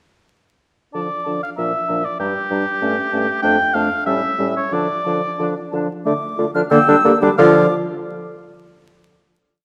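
Vinyl crackle sits under a quick classical-period movement for wind quintet in D minor, with all five instruments entering together at 0.9 seconds in an urgent, restless mood. The pulse moves in 2/4 at roughly 88 to 98 BPM, pushed and pulled with rubato. High above, the concert flute carries the melody with a pure, straight tone, crisp attacks and repeated notes, while the up-front oboe adds a warm, lightly vibrato counter-melody and sustained chords. Beneath them, the clear French horn and the dark, distant clarinet keep up a driving ostinato of repeated notes, and the mellow bassoon anchors a repeated bass line with light vibrato. After the main section, a brief coda begins at 6.1 seconds, and the piece settles on a final D minor chord at 7.4 seconds, all of it heard in a wet recital hall reverb.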